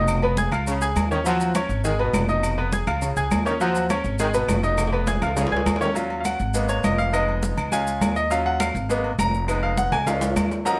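A straight 4/4 salsa groove at 204 BPM drives this fiery, passionate fragment, with damped congas, ringing agogo bells and timbales, woody claves heard distantly and grainy maracas churning under a thumpy, gut-strung pizzicato upright bass and a bright baby grand piano cycling through Fm7b5, Db, Ebm7 and Abm, while a tight, close-miked trombone section plays a second line until 5.9 seconds, a drum fill at 4.8 seconds leads into the piano's present, polished solo from 6.0 seconds, and moderate studio reverb surrounds the whole cut.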